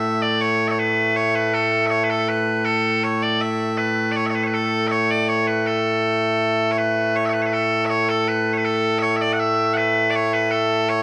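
A loud, bright set of bagpipes carries this short Scottish traditional excerpt alone from the first second to the last, their piercing, continuous tone sitting up front in the mix. The mood is proud and ceremonial, moving at a steady 80 BPM in 2/4 with a straight feel, in A major and tuned slightly high to A4 = 442 Hz. The melody spans from A2 up to F#5, and the opening phrase returns at 7.2 seconds to run again until the clip ends at 11.0 seconds. A wet concert hall reverb with a 1.8-second decay surrounds the pipes, lending the sound a spacious, stately bloom. Cut from a longer piece, the passage feels like a fragment of a formal ceremony.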